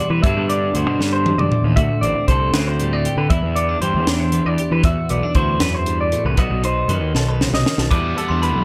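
Set in 6/8 with a straight feel, this short math rock and midwest emo passage, cut from a longer piece, feels restless and intricate. A crisp fusion drum kit sits up front with an airy, polished studio-room sound, a high-tuned snare and a tight kick, breaking into fills around 1.0 seconds and again just before the close. Beneath it, a round, fuzz-drenched picked electric bass adds overdriven grit, while a twelve-string electric guitar supplies bright, twangy accompaniment through a lush chorus and a clean electric guitar spins scooped, compressed arpeggios trailed by tape echo. The harmony moves through Gmaj7, D7, Cmaj9/E, Em9 and B7 before landing on Em9 at 7.9 seconds, where a bell-like glockenspiel played with soft plastic mallets and a double-tracked overdriven electric guitar riff briefly join. Light reverb and a dark, warm production tie the layers together.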